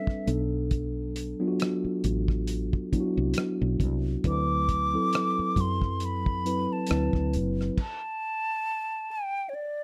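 A hollow, vibrato-laden concert flute and a mellow tine electric piano open this sultry, smooth neo-soul R&B fragment at 68 BPM with a lightly swung 16th-note feel, soon joined by a cloth-damped, thuddy drum kit with dark cymbals and a tight kick and by a round, punchy woody fretless electric bass, every part sitting up front in light reverb as the harmony moves from Bm7 to D13 until the band stops at 7.8 seconds and the pure, tongued flute carries on alone to 9.8 seconds.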